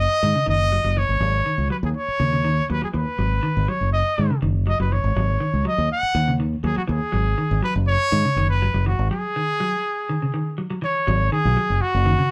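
A live band shares one modestly ambient studio room in this funky, intense afrobeat passage in G# minor at 122 BPM, cut from a longer piece. Up front, a breathy, whispered solo trumpet carries the melody with vibrato and a soft attack, while a round, amped fingered electric bass holds the low end. A dark, picked clean electric guitar plays arpeggios through spring reverb, and the groove drops into a break from 9.1 to 11.1 seconds before moving into a new section.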